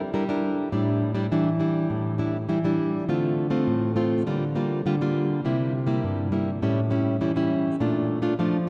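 Bathed in a long, wet cathedral reverb that fills a church or concert hall, a solo nylon-string guitar sits up front with a warm, classical, fingerpicked tone. This short excerpt of a bittersweet yet lively samba moves at 102 BPM in a straight 4/4. The guitar ranges from G2 to Bb4 as the harmony travels from Em7b5/G through Dm7, C7 and A7 before landing on Bbmaj7 at 7.8 seconds.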